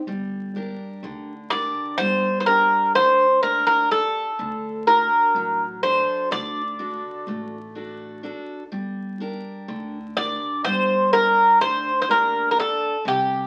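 Reflective and wistful, this short excerpt of Greek folk music moves in a straight-feeling 9/8 in the bouzouki-band style. A picked steel-string acoustic guitar and a pizzicato upright bass start together at 0.1 seconds, the guitar bright and boxy with audible finger squeak, the bass woody and set in the background. At 1.5 seconds the Greek bouzouki enters up front with the melody, its metallic double strings, some doubled at the octave, ringing out clearly above the accompaniment. The harmony rests on G minor, moves to D, and returns to G minor, giving the passage a quietly circling, melancholy shape. A small, wet room reverb surrounds the band, and the sound carries the crackle and aged character of a very old 78 rpm record, lending the performance a nostalgic, bygone atmosphere.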